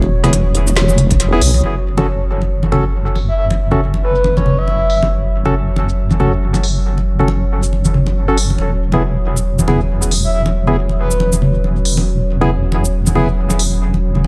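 A deep, chorused wobble bass sits up front in this cavernous, heavy deep dubstep excerpt at 138 BPM in a swung half-time feel, under a dark ambient pad with a filter sweep from 1.6 seconds, low-tuned congas and percussive organ stabs trailing dub echo, a deep house kit with a woody snare and smooth filtered hats, a lone background kick at 1.1 seconds, and a breathy flute-like lead with gritty sampler texture that surfaces at 3.3 and 10.2 seconds over E and F#m chords.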